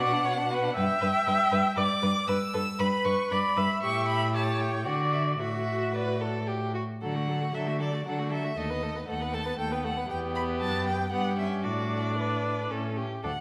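A string quartet opens together in a lively, spirited classical-period movement in three, played with a flexible rubato feel, the first violin carrying a rich, smooth, vibrato-laden melody high above the second violin's even inner line. Beneath them, the viola adds expressive accompaniment with portamento, while the cello's focused bowed bass anchors the texture. The recital hall's reverberant ambience surrounds the players as the music moves into a new section at 7.0 s, and this short passage, cut from a longer piece, ends at 13.4 s.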